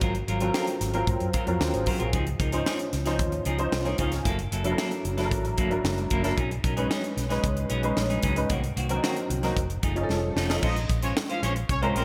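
Bittersweet and nocturnal, this polished 1980s jazz-funk pop excerpt in Bb minor moves at 113 BPM, with an up-front grand piano under ensemble chorus, a clean, scooped semi-hollow guitar riff in lush chorus, a round, foam-muted fingered bass, and a crisp fusion kit with a high-tuned snare and gated reverb, while very quiet bright congas join at 2.1 seconds, a drum fill at 10.1 seconds leads into a tight horn section with a smooth top at 10.6 seconds, and the chords pass from Ab13 through Gb7alt and F7alt to settle on Bbm9 within a bright digital production and moderate plate reverb.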